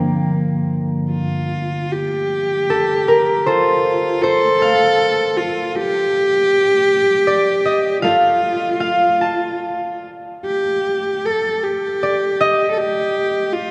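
Bathed in a dark, cavernous church reverb, this fragment of a longing, haunting Celtic slow air in a free, rubato 6/8 pairs an up-front, fingerpicked concert harp, whose ringing accompaniment opens on a Gm7 and turns into a solo at 1.1 s, with a close, intimate bowed cello playing a soft-attack, sul tasto second line with light vibrato throughout.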